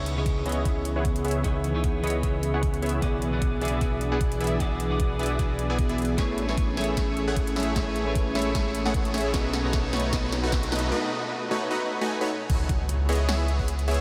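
This bittersweet, emotional future bass excerpt opens at 152 BPM in C# minor, with a half-time, lightly swung 4/4 feel. A bright, detuned supersaw stab riff sits up front, beside a thick, saturated sine sub bass and a clean, compressed twelve-string electric guitar, all three pumping against the sidechain. A thumb-plucked concert harp rings out arpeggios in the background, with a punchy, metallic big-room dance kit, a knocking electronic kick and a very quiet, airy pad of slow-attack detuned chords joining almost at once. Through the long build-up, filter sweeps move across both the supersaw and the harp, which also carry analog delay, while the chords move from C#m7 through E7/B and Amaj7 to B7 and a drum fill rolls underneath. A faint riser enters at 9.9 seconds, and the guitar and pad drop out at 10.9 seconds. The drop lands on C#m7 at 12.5 seconds with an impact, and the whole dreamy mix is soaked in a huge ambient reverb.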